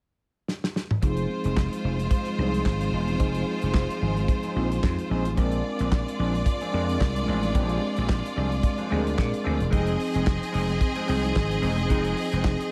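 A dark soul drum kit with a tight kick, handclaps, hi-hat, snare and toms drives this glamorous disco excerpt at 110 BPM with lightly swung 16ths in F dorian, playing a fill from 0.5 seconds before a growly, punchy slap bass, a tine electric piano with medium tremolo through a combo amp, a clean picked electric guitar with spring reverb in the background, and a lush, bowed string section all enter at 1.0 seconds over Fm7 and Bb9, while a filter sweep runs until 12.7 seconds in a studio-reverb space.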